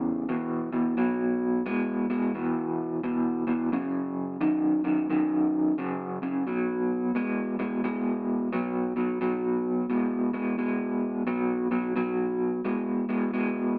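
A lone electric guitar through a small old amp opens this blues excerpt, its slightly broken-up, lo-fi tone sitting up front with a pulsing tremolo. The tempo is an easy 87 BPM in 4/4 with a swung eighth-note feel, giving the playing a swaggering yet laid-back mood in B major, tuned a touch flat of standard pitch. Fingered and compressed, the guitar stays in a low register and moves through power-chord shapes on E, B and F#. The same passage is played twice, the second time beginning at 6.5 seconds on B. A wet stone-room reverb surrounds the part, giving the sense of a band playing live in one space as this short cut from a longer piece runs to 13.8 seconds.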